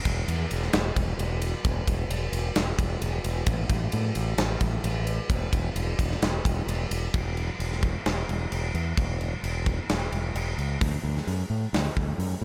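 A dry, up-front mix carries this dreamy, hazy shoegaze and dream pop rock excerpt at 131 BPM in a straight 4/4, where a growling, overdriven fingered electric bass sits low and direct under a big acoustic rock kit with a punchy kick, medium-tuned snare, gleaming crash, hi-hat and ride cymbals and a roomy sound, shifting sections at 7.1 and 10.8 seconds before the cut at 12.4 seconds.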